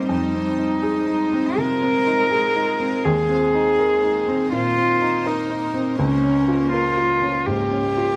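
A neoclassical piece for piano and strings in F minor, this short cut from a longer work moves at a rubato 81 BPM in 4/4 with a melancholic, fragile mood. A baby grand piano carries the accompaniment from deep in the bass up to the middle register, its tone worn and short in sustain, sitting up front. A single muted cello plays a second line con sordino with bowed, lightly vibrated notes, its sound dark and veiled, also close to the listener. Further back, a soft ambient pad holds sustained chords with a slow attack and long release, its detuned sine and triangle tones shimmering an octave up, with ring modulation, granular texture, chorus and its own reverb giving it a bright, ethereal glow. The harmony moves from Fm7 to Abadd9/Eb at 3.0 seconds and settles on Db6 at 6.0 seconds, all within a light reverb.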